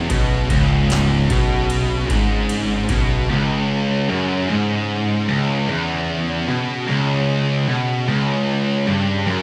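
A booming analog drum machine, with a deep kick, crisp snare and ride re-recorded in a large room, drives a straight, hypnotic 75 BPM stoner-doom groove in C# minor, its kick and snare dropping out at 2.5 seconds. Two thick fuzz guitars, one dark and one warm and up front, lock in with a bright, double-tracked high-gain guitar on a low, heavy riff over a growly, overdriven fingered bass in the background, moving from a C#5 power chord to C#m as the bass falls away at 3.3 seconds. A very quiet, round tonewheel organ holds sustained chords through a slow rotary speaker with chorus vibrato, all set in a moderate large-studio reverb that feels like a band playing live in one room.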